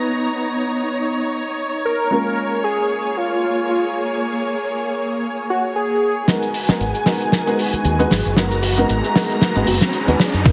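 A swung sixteenth-note nu-disco groove shapes this groovy, sleek excerpt, which opens on a dark, worn baby grand piano with tape echo and a lush, woody string section pumping under sidechain, joined at 1.9 s by a thick, detuned sawtooth unison lead carrying the melody through analog chorus and dub echo. At 6.3 s a build-up begins: a dry 70s kit plays a fill with a fat snare and hi-hat up front, a tube shaker sits in the background, and a filter sweep works over the lead. A punchy envelope-filtered fingered bass arrives at 6.7 s, and from about 7.5 s a riser adds tension behind it all. A gritty, thumpy electronic kick lands at the very end, and the whole mix carries a heavily compressed, radio-like sheen with hall reverb.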